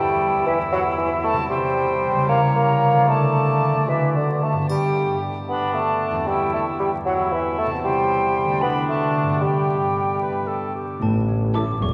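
Drenched in a cathedral-like reverb with a faint vinyl crackle beneath it, this short cut from a longer cinematic cue has a playful, whimsical and slightly magical air, swaying in a lilting 6/8. From the start, a bright, ringing, fingerpicked concert harp spreads arpeggios up front while a distant, roomy bassoon supplies soft-edged accompaniment. Above them a mellow cor anglais and a pure, warm silver concert flute each weave a second line with vibrato. A close, dry triangle adds a tiny sparkle in the background around 4.7 s. At 11.0 s the woodwinds drop away and the texture shifts: an airy, bell-like glockenspiel with soft plastic mallets takes the melody from the background, grounded by a clear tuba, a rich cello section and very quiet double basses. Just after, violins and violas flicker in for a split second.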